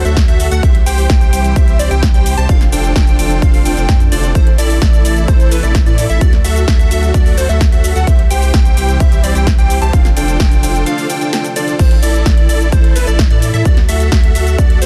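Powerful and anthemic, this festival progressive house drop in A minor drives at 129 BPM, with a punchy, up-front electronic kick and a big-room kit of punchy snare, metallic hats, shaker and crash riding over a deep, saturated sub bass, the bass, riff, lead and pad all pumping against the sidechain. A huge, detuned supersaw riff with delay carries the hook alongside a catchy, plucky square-wave lead arpeggiating through phaser and delay, while a lush, chorused pad holds slow-attack chords in the background through a short break at 10.9 seconds before dropping out at 11.8 seconds. The dry, dense and heavily limited master keeps the drop relentless as the chords cycle through D, C, F6 and Am.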